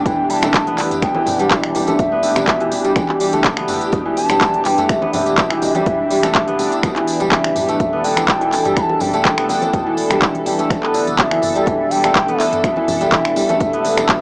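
Heard through the lo-fi haze of a home cassette recording on a small speaker, this earthy afro house passage pairs an airy, close-miked bamboo bansuri melody with tape echo against crisp, fingerpicked kora arpeggios and a detuned sawtooth pad carrying chorus, sampler grit and sidechain pumping on a sustained Em7, while a punchy, overdriven electronic kick and an up-front afro-pop kit of finger snaps, handclaps, smooth hi-hat and toms drive the groove over low-tuned congas, a jingly tambourine and a round, warm sine sub bass tucked in the background.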